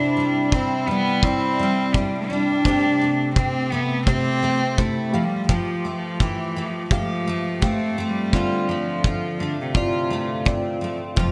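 A warm, close cello carries the melody over a double-tracked, fingerpicked steel-string guitar, a reedy, worn electric piano with light overdrive and fast tremolo, and a punchy kick drum from 0.5 seconds, with a woody pizzicato upright bass appearing only at 11.2 seconds, in this sunny, easy-going acoustic pop excerpt at 84 BPM with a swung sixteenth feel, moving through Cadd9, Am7/C, Fadd9 and Dm7 under a moderate plate reverb and bright 1980s-style digital production.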